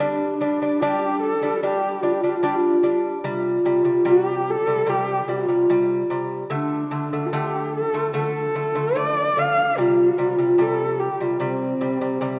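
Vast and galloping, this Mongolian folk excerpt at 74 BPM in C zhi mode sets a dark, husky horsehead fiddle melody with vibrato and portamento against bright, delicate fingerpicked lute arpeggios on double gut strings, both up front in the 12.4 seconds and bathed in a wet scoring-stage reverb over chords moving from G5 through C5 and D5 back to C5.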